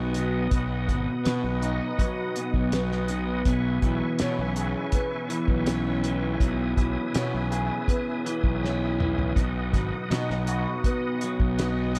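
Psychedelic rock at 81 BPM in a straight 4/4, this short cut from a longer piece feels kaleidoscopic and hazy, sitting in B major and moving from B to C#m7/B at 3.5 seconds before returning to B at 9.4 seconds. A picked electric guitar through a small old amp carries the riff up front, its slightly broken-up, compressed tone double-tracked and colored by phaser. Beneath it, a fuzz-laden fingered bass holds the low end with a round, overdriven sound, also placed up front. A bright, reedy tonewheel organ sustains chords higher up, its clean tone turning through a slow rotary speaker and chorus vibrato, with audible key click. The cloth-damped drum kit, entering at 0.1 seconds, thuds dry and dark with a fat snare, tight kick and rolled-off top, and plays a fill from 8.6 to 9.4 seconds. A moderate cathedral reverb with a long tail soaks the whole mix in a dreamy wash.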